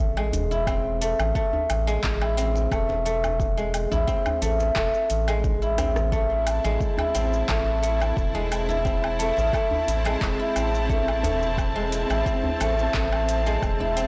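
Organic downtempo at 88 BPM in 4/4 with a straight feel, this hypnotic, warm excerpt sits in A harmonic minor on an A minor chord, tuned to A4 = 444 Hz. Up front, a silvery, ringing guzheng played with fingerpicks spins arpeggios through a delay, while a round, dark analog bass with a wave-folded edge holds the low end under tube saturation and sidechain pumping. An afro-pop kit with metallic hats and a tape-tinged character supplies handclaps, hi-hat, rim click, shaker and woodblock in a small room ambience, joined by a djembe struck with hard hands in the background from 0.3 s and a deep electronic kick from 0.7 s. After a drum fill at 5.8 s, a rich studio string section enters at 6.3 s with smooth, bowed sustained chords carrying vibrato, also pumping with the sidechain. The whole recording comes across blown-out and overdriven, with light studio reverb around it.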